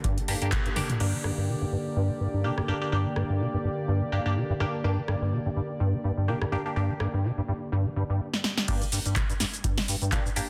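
Driving and gritty, this acid house cut from a longer piece runs at 125 BPM in 4/4 with a light 16th-note swing, sitting on G minor. An up-front liquid acid bass carries the riff from the start, its squelchy, resonant square-wave tone given an ensemble chorus and sidechain pumping, and a filter sweep moves across it from 1.0 to 8.7 seconds. An electro analog drum machine runs throughout with a punchy snare, metallic hats, handclaps, rim clicks, shaker, toms and crash, while a deep, tape-warm electronic kick appears only briefly at the opening and returns for the drop at 8.7 seconds. Underneath, a soft-attack sawtooth pad holds sustained chords with chorus and sidechain pumping until 8.6 seconds. A nasal, band-passed chord stab cuts in with short, bright hits treated with phaser and tape echo. A drum fill arrives at 0.8 seconds and another leads into the drop, and the whole piece sits in a moderate plate reverb with a dense, heavily limited modern master.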